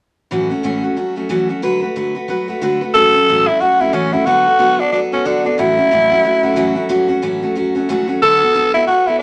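Rock with a rowdy, rollicking swing at 182 BPM in A major, built on a bright, full-bodied dreadnought steel-string acoustic guitar, picked with fresh strings and placed up front from 0.3 seconds as it moves between A6 and D6 chords. At 2.9 seconds a growling tenor saxophone takes the solo melody up front, raspy and gritty, with subtone, vibrato and scooped notes in a pop style. A wet studio reverb gives this passage, cut from a longer piece, a lively sense of space.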